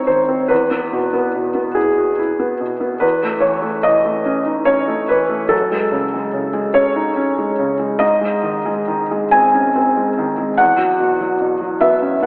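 Neoclassical minimalist piano in a tender, peaceful mood, this brief passage cut from a longer piece features a lone felt-muted upright piano drifting through a rubato 6/8 across the span from E2 to G#5, with chords such as Esus2, A/E and F#madd9. The piano sits up front, soft and intimate, with a boxy, mellow tone, audible action noise and a diffuse ambient delay. A long plate reverb soaks the dreamy mix, while a telephone-like filter narrows the whole sound.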